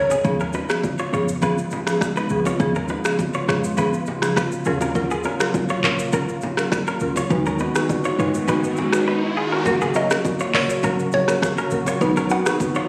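A drum fill opens this sultry, smooth afrobeats excerpt as a bright, twangy clean electric guitar riff with tape echo and a deep, boomy 808-style bass begin, soon joined by an up-front electronic kit with a deep kick, metallic hats, snaps and handclaps, ringing bongos and congas in the background, a buzzing, woody marimba, and a hollow, flute-like pad with chorus and sidechain pumping, while an electronic riser sounds from 8.1 to 9.7 s before a round, mellow synth pluck carries the melody through chorus, phaser and tape echo from 10.0 s, the whole heard in a concert-hall reverb and captured on a phone in the room.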